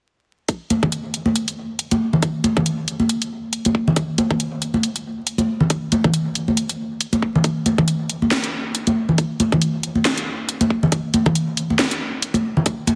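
Drenched in a lush hall reverb with a digital sheen, this dense, heavily limited mix carries a faint vinyl crackle over a dark, brooding dubstep groove at 138 BPM in 4/4, felt in half-time with a 57% swing on the sixteenths. A tight, layered electronic kick, thinned by a high-pass filter, sits up front beside an overdriven garage kit whose hi-hat and cracking snare enter with it at 0.5 seconds. Congas with an acoustic, small-room tone arrive at 0.7 seconds, wrapped in dub echo, and this passage cut from a longer piece holds to a single section until 13.0 seconds.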